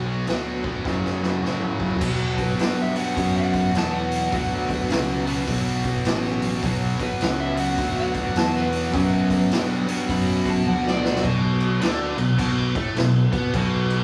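Brooding and smoky, this 104 BPM blues rock and southern rock excerpt in B minor swings its eighths as a tight, bright, double-tracked distorted guitar riff and a growly, punchy fuzz bass drive from the start, joined at 0.3 seconds by a raw garage drum kit with a boomy kick, gritty saturation and a rolled-off top. A dark, overdriven slide guitar takes the melody from 2.4 to 11.2 seconds, with drum fills leading into and out of the solo. The band sounds live in one small room, with moderate studio reverb and chords moving from Bm to F#m and back.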